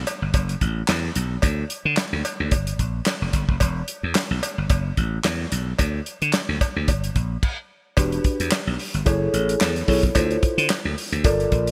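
Early-eighties boogie funk excerpt at 110 BPM in E dorian with a light sixteenth-note swing and a funky, late-night mood, built on a bright, growly, punchy slap bass and a dry, damped 70s drum kit of tight kick, medium-tuned snare, hi-hat, handclaps and dark crash cymbal, with a metallic cowbell sitting further back, all stopping briefly at 7.4 s before a mellow tine electric piano with subtle chorus enters at 8.0 s on lush ninth chords, the whole mix polished with a glossy 1980s-style digital sheen and a moderate hall reverb.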